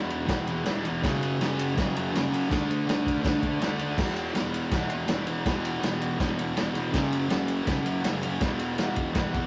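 Garage rock with a raw, rowdy feel, this short cut from a longer piece pairs a bright, double-tracked fuzz guitar riff over power chords moving between E5, F#5 and D5 with a muffled, lo-fi vintage drum kit of punchy kick, snare, crash and ride, both up front in a rough rehearsal-room sound with moderate studio reverb.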